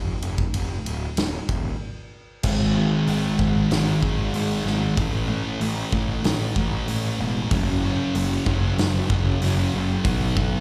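Heard live through a club PA with light reverb, this brooding, cathartic quiet-loud alternative rock excerpt opens on a growly, overdriven fuzz bass and a big acoustic drum kit with a fat snare and punchy kick, pauses for a break at 1.8 seconds, then a thick, double-tracked fuzz guitar riff enters up front at 2.4 seconds over a run of power chords.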